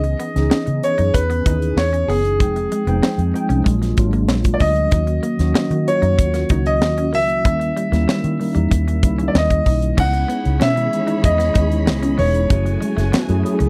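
Bittersweet and nocturnal, this polished 1980s jazz-funk pop excerpt moves at 95 BPM in a straight 4/4, drawn from a longer piece. A bright, brilliant concert grand piano carries the melody up front, while a mellow tine electric piano with ensemble chorus fills in the chords over a progression that opens on C#m9 and passes through rich extended harmonies like A#7b13 and D#7b9. An electric guitar at the edge of break-up plays a twangy riff in the background with a subtle chorus. A round, punchy, foam-muted fingered bass anchors the low end beside a crisp fusion kit with a high-tuned snare, tight kick, hi-hat and crash. At 10.0 seconds the music shifts to a new section, where a lush symphonic string section enters with expressive vibrato and portamento, and very quiet, low-tuned congas add soft-handed color. The sound is dry and close, like a 1970s-style studio recording.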